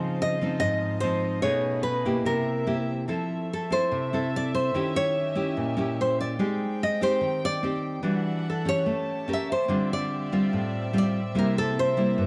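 A straight bossa nova pulse in 4/4 at 145 BPM carries this breezy, sophisticated excerpt, cut from a longer piece, with a fingerpicked nylon-string guitar comping up front through lush harmony such as Dbmaj9, B13 and C7 before settling into F major at 3.1 s. A second classical nylon-string guitar enters with the melody at 0.2 s and takes a solo from 3.1 s, while a studio violin section sits further back, holding smooth, reedy sustained chords with light vibrato and a period-style gut-string tone. Close, detailed microphones keep the acoustic guitars intimate, set in a moderate large studio reverb.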